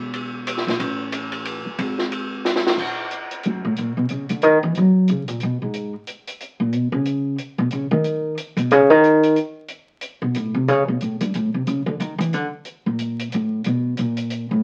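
An up-front, woody upright bass with thumpy gut strings takes a solo from 2.8 seconds in this intense, spiritual modal jazz excerpt in swinging 3/4, backed by a dry, compact cocktail drum kit with dark cymbals, a high-tuned snare and a punchy kick, which plays a fill just before the solo, all heard through moderate studio reverb and the crackle of a very old 78 rpm record.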